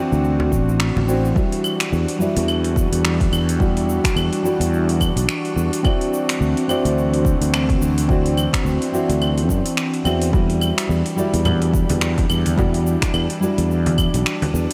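A dark, full-bodied nylon-string guitar, thumb-plucked in a deep classical tone, opens this relaxed sunset chillout excerpt alongside an airy, breathy pad whose detuned, chorused chords bloom slowly and linger. Almost at once a growly, punchy fretless electric bass moves up front, and an overdriven deep house kit of claves, finger snaps, metallic hi-hats and shaker sets up a gentle swing on the sixteenths, soon anchored by a deep, overdriven electronic kick. Ringing congas and bongos, struck with hard hands but kept very quiet, appear briefly at the start and return from 11.5 seconds. From 1.4 seconds a filter sweep passes over the guitar as the harmony alternates between D9 and Em9. A huge ambient reverb soaks the whole mix in a dreamy haze, giving the piece a warm, unhurried glow.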